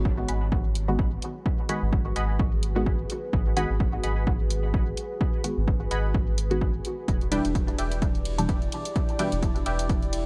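A swung pulse from an up-front, tape-toned electronic kick and a punchy analog drum machine's hi-hat and ride drives this meditative, hazy dub techno excerpt, with a round, mellow sub bass pumping beneath it. Muted sawtooth chord stabs with filter plucks, chorus, phaser and dub echo sit in the low-middle register, while a second, higher stab riff adds detuned, short-decaying accents with its own echo. A dark, slowly blooming pad carries sustained chords, moving from G#m7 to Em7 at 7.1 s, all over a dry, dusky mix.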